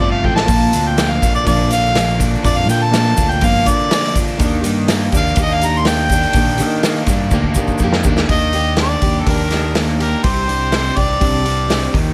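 Nostalgic and open-road in spirit, this short folk rock and heartland rock passage in a straight 4/4 puts a mellow, up-front harmonica solo with scooped notes at the center for the first 8.3 seconds, over a picked, parlour-style plugged-in acoustic guitar with fresh strings and a double-tracked, crunchy overdriven electric guitar riff. Underneath, a bright fingered electric bass and an up-front vintage drum kit with a punchy kick, medium-tuned snare and rolled-off top drive things along, with drum fills at the start and from 7.3 seconds, while a grainy tube shaker sits in the background from 0.5 to 8.2 seconds. The harmony moves from Bb to Ebmaj7 and settles on Csus2, and the dry, close sound has little reverb.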